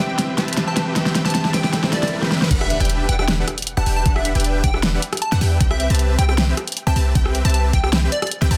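A deep, boomy 808-style bass sits up front in this lush, bittersweet future bass excerpt, arriving with the drop at 2.5 seconds and pumping against the sidechain beneath a half-time groove at 155 BPM in E minor. Before that, a short build-up opens on Cmaj7 with a drum fill from an up-front pop kit, whose fat snare, crash, rim clicks and hi-hats carry overdrive. A very quiet, bell-like tine electric piano plays along, while a filter sweep, a swell and a background riser lead into the drop. From there, an overdriven, knocking electronic kick joins the kit, and an impact marks the arrival of Em9 before the chords return to Cmaj7. Throughout, a huge, thick, detuned supersaw riff with a sub octave and vibrato pumps through a low-pass filter alongside a punchy, catchy square-wave lead melody with phaser and delay. From the drop, a softer unison pluck adds background arpeggios through phaser and dub echo, all set in light digital ambience and a dense, heavily limited modern master.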